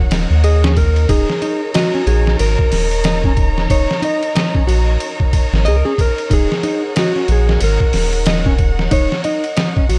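A swung, gritty, sampler-style trip hop groove of thumpy kick, medium-tuned snare, hi-hat and ride in a small room anchors this dark, melancholic fragment on a single Ebm7 chord, where a deep, round dub sub bass sits up front, a fingerpicked nylon-string guitar arpeggiates through digital delay, a muted violin section holds veiled, distant chords, and a clean lap steel slides a mournful melody through tape echo from 0.4 seconds.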